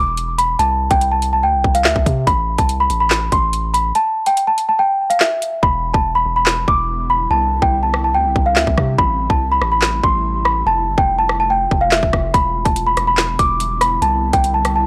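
Cold and menacing, this half-time drill cut at 143 BPM in E phrygian sets a bell-like, delicate celesta melody with analog delay up front over a deep, sine-toned 808-style bass that sustains and decays beneath it. The electronic drum kit pairs a hard-clipped kick, woody snare, metallic hats, handclaps and rim clicks, with the kick dropping out from 4.0 to 5.6 seconds and the hi-hats falling silent from 5.6 to 12.3 seconds. An ethereal, detuned pad with ensemble chorus and reverb enters with a slow attack behind it all from 6.3 seconds, heard through a dry, gritty hardware sound.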